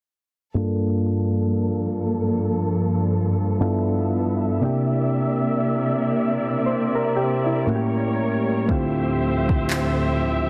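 Set at a slow 59 BPM in 4/4 with a swung sixteenth-note feel, this moody, sensual contemporary R&B passage in G dorian is cut from a longer piece. Soft electric-piano-like synth keys open at 0.5 seconds. Their round, warbling, vintage tone is colored by chorus and softened by a low-pass filter as they carry the accompaniment up front. A dark studio string section joins at 0.6 seconds with lush, bowed sustained chords, its vibrato expressive and its top smooth, and a filter sweep runs across the rest of the passage. The harmony moves through Gm9, G13, C9 and A7b9 before settling on Dm11. At 8.7 seconds a smooth electronic R&B drum kit slips in briefly with handclaps and a soft kick that was re-recorded in a large room. Light reverb surrounds a dense, heavily limited modern master.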